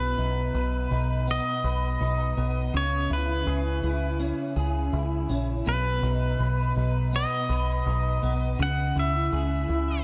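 Dream pop with a floating, blissful mood, cut from a longer piece and given a dark production inside a moderate concert hall reverb. A clean pedal steel guitar, played with fingerpicks and slide in volume swells, carries the melody through shimmer reverb and delay. A slightly broken-up, compressed electric guitar picks arpeggios under ensemble chorus, shimmer reverb and delay, while a round, foam-muted dub bass sits up front as the harmony moves between B and C#m across the full 10 seconds.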